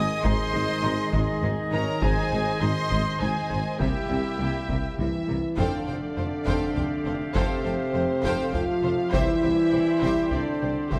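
A straight 3/4 pulse at 101 BPM drives this majestic, heroic passage from an epic orchestral film score, with a taiko ensemble struck with heavy sticks entering at 0.2 s and sounding as if played in a small room. A distant, lush violin section carries the melody, even and full of vibrato, while a second violin line and a viola section add bowed support, the violas sliding with portamento in the background. Beneath them a mellow French horn section stands out in sustained chords alongside a bright, close-miked woodwind section and a dark, tight trombone section, while a solo trumpet with light vibrato plays roomy stabs until 5.0 s. The low end comes from a very quiet tuba with a smooth top, soft-attack cellos and an expressive double bass section. The harmony moves from Ab to C7 before settling into F major at 5.6 s on Fadd9 and then C, bathed in generous scoring-stage reverb.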